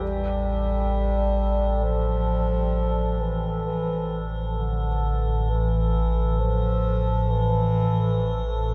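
A detuned analog drone with pulse-width modulation fills the low end from the first moment, sitting up front beneath a lush chorus, while a distant, roomy bass clarinet carries a solo classical-style melody through a delay and an eerie, metallic FM texture hangs above. A very quiet, clear baby grand piano adds intimate arpeggios with audible action noise and long sustain. This cavernous, desolate dark ambient drone moves in free time for 8.7 seconds, cut from a longer piece and steeped in a huge, wet reverb that suggests a vast echoing space, with a cassette-tape character.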